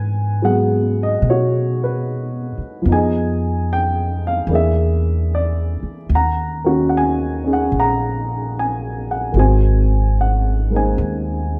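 A baby grand piano and an upright bass begin together, opening a melancholic, intimate jazz ballad at an unhurried pace with a gentle swing. The piano plays accompaniment in the middle and upper register, its tone warm and natural, placed up front in the mix. The plucked upright bass sits low beneath it, with a woody, thumpy character from its gut strings, also close and present. The harmony moves from G#m7 through Fm7b5 and E7#11 to D#m7, then turns to G#7 near 9.3 seconds. Light reverb and a dark, warm production frame this short passage, which is cut from a longer piece and ends at 11.6 seconds.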